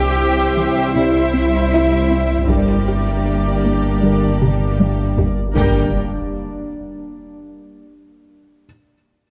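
A straight 4/4 pulse at 78 BPM carries this tense, vast hybrid orchestral and electronic film cue in G minor, moving from C to Gm at 2.5 seconds. From the opening, lush vibrato violins (one distant melody in the background, one focused second line), viola and cello sections, portamento double basses and a thick saturated sub bass sit under a warbling, nostalgic lo-fi pad with chorus and phaser, a soft round pluck arpeggiating very quietly, and a felt-muted upright piano with digital delay. Meanwhile, mellow horns and very quiet trombones join near 1.0 seconds, a background taiko ensemble adds a drum fill, and a huge dark impact lands at 5.6 seconds in a moderate concert hall reverb.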